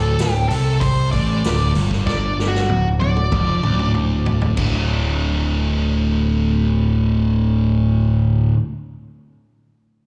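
A sludgy, double-tracked distorted guitar riff, a growling overdriven bass and a dark octave-fuzz lead guitar all kick off together in this swaggering, raunchy slice of blues rock power trio and southern rock, with a vintage drum kit joining a moment later. The lead guitar sits lower in the mix, its fuzzy, distorted melody trailing slapback echo and digital delay before it drops out at 3.9 seconds. Up front, the overdriven rhythm guitar grinds out a heavy riff in a straight four feel, while the bass has a bright, punchy, amped bite. The acoustic kit has a dark, rolled-off top, with dark cymbals, a medium-tuned snare and a punchy kick, and it plays a fill from 2.1 seconds before stopping at 4.7 seconds. After that the rhythm guitar and bass carry on as the harmony moves from a D power chord to a full D chord. The sound is that of a live club gig heard through the venue's PA, with a light club reverb around it, and the recording is cut from a longer piece.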